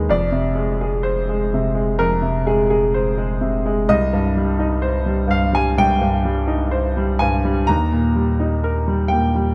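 Neoclassical piano and strings at 63 BPM in 4/4 with a rubato feel, this intimate, tender excerpt pairs a clear, natural baby grand piano playing up-front accompaniment with short sustain against a deep, thick, saturated sine sub bass with a fast attack, both running the full 9.5 seconds under light reverb and a soft-topped sound, through chords of Fm, Cm and Eb.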